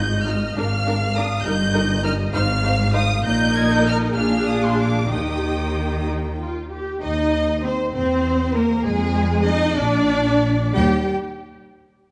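In a 6/8 with rubato, pulsing at 59-69 dotted-quarter beats per minute, this lively, spirited classical-period movement for string orchestra in Eb major is cut from a longer piece. A lush, expressive violin section carries the melody up to Ab6 over a smooth, even second violin line set at a distance. A viola section with portamento supplies the accompaniment, while a rich cello section and a focused, up-front double bass section share the bass line; every part sounds from 0.0 to 11.1 s with vibrato. A moderate scoring-stage reverb and a dark production give the strings a deep, enveloping glow.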